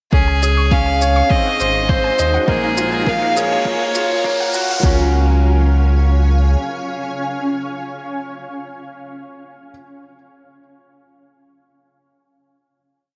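A dreamy, reverb-soaked mix in a vast cathedral space opens this hopeful, luminous piano and strings electronica piece at 102 BPM in Db major, where a clear, biting violin with delay carries the melody over a bright, woody upright piano riff drifting against the bar, a warm pumping sub bass with long gliding notes, a four-on-the-floor kick, a restrained shaker, a very quiet warbling pluck arpeggio, a cloudy granular pad entering at 1.3 seconds, and a background riser from 2.4 seconds lifting the build into a final Db chord at 4.8 seconds.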